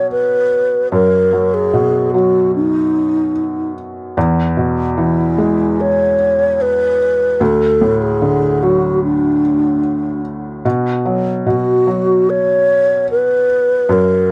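Pop with an emotional, tender mood, cut from a longer piece and moving in a straight four. A breathy alto flute with a wooden head carries the melody throughout, its hollow, mellow tone shaded with vibrato and clearly tongued notes. Beneath it, a felt-muted upright piano plays the accompaniment low in its register, soft and intimate with a thin felt character, sitting a little lower in level than the flute. The harmony moves from B to E at 4.2 seconds, then to D, and finally to Bsus2 at 10.6 seconds. Both instruments sit up front in a dry, close recording with the feel of a 1970s studio and a modest booth ambience.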